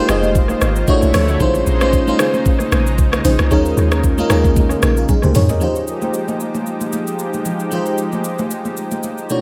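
A light reverb and digital ambience wash over this echo-heavy amapiano excerpt in F minor at 114 BPM, its hypnotic, deep groove swung on the sixteenths as an up-front, dreamy, detuned FM electric piano with a soft pad layer and a lush, warbling sawtooth unison pad carry chords from Fm9 through Bm11, Bbm11 and Eb7sus4. A round, dark log drum bass and a very quiet, soft chord stab with a filter pluck and phaser enter alongside the electronic drum kit, with its knocking kick, metallic hats, rim clicks, shaker and toms, while bright, damped congas with thin skins sit in the background. The bass and stabs drop away after a drum fill ending at 5.6 seconds, leaving the keys, pad, drums and congas to return to Fm9 for the closing passage.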